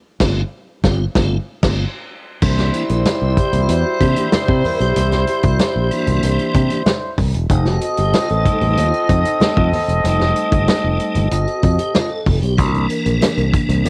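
A piping tonewheel organ with key click, chorus vibrato and fast rotary speaker takes a solo from 2.4 seconds in this playful 94 BPM funk excerpt in C mixolydian, as a clear, distant horn section and very quiet, low-tuned congas join the growly, punchy fingered electric bass and tight soul drum kit with dark cymbals, while a jingly tambourine arrives at 12.6 seconds in a dry cassette home recording.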